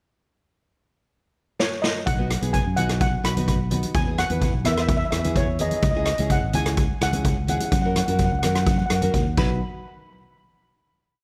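A straight 4/4 calypso groove at 127 BPM, kicked off by a drum fill at 1.6 seconds from a boomy, mid-forward street-band kit, drives this short, carefree and bouncy piece in B major, where a shimmering lead steel pan with digital delay carries a smooth motif-based melody over a round, punchy fingered electric bass playing a syncopated figure, dark fingerpicked triads on a small nylon-string guitar, and a very quiet, damped, loose conga pattern, set in light reverb before a final hit at 9.6 seconds.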